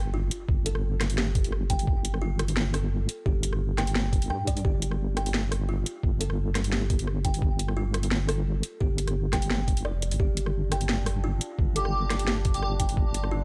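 A half-time groove at 173 BPM drives this tense, dark drum and bass excerpt, where a gritty, pitched-down electronic kick and an overdriven kit with a cracking snare and bright hats play alongside a deep, chorused wobble bass, while a woody kalimba plays dub-echoed arpeggios, a very quiet sub drop lands at the opening impact, an eerie, metallic drone enters at 10.7 seconds, and an airy, dreamy lead with delay sounds a brief G4 at 11.8 seconds in a dry mix.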